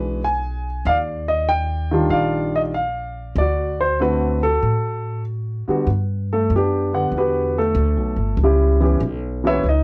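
An intimate baby grand piano with audible action noise carries the melody and takes a solo from 5.9 s, over a woody, thumpy pizzicato upright bass on dark gut strings, in this relaxed, playful swinging jazz piano trio excerpt at 96 BPM, moving from E9 through Ebmaj9 and D7 to settle in G major on Gmaj7, all colored by light reverb and worn, warbling cassette tape pitch drift.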